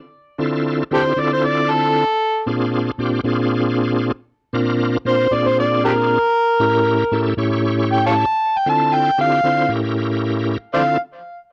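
A 116 BPM blues in 4/4 with a light swing on the sixteenths, this brooding, smoky excerpt in D minor is cut from a longer piece and tuned slightly sharp at A4 = 441 Hz. A bright, full tonewheel organ enters at 0.4 seconds as accompaniment, shouting and lightly overdriven through a slow rotary speaker with chorus vibrato, sitting up front. At 0.9 seconds an amplified, gritty harmonica takes the solo melody, jazz-inflected with tongue slaps and scooped notes. The harmony moves from Dm9 through Bb7 to a tense A7b9 before settling back on Dm9. The sound is dry and close, with little reverb, in the manner of a 1970s studio recording.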